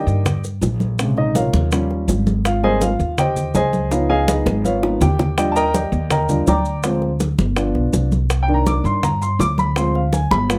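A straight, driving 4/4 pulse at 164 BPM carries this sultry Afro-Cuban jazz excerpt, where tight, high-tuned bongos played with soft hands, bright thin-skinned congas and grainy, mellow maracas sit beneath a dark, woody, thumpy pizzicato upright bass on gut strings and an up-front, natural baby grand piano that solos from 0.0 seconds through chords running from Ebmaj7 to Dm7b5, with a drum fill from 3.9 to 5.4 seconds and a light reverb around the ensemble.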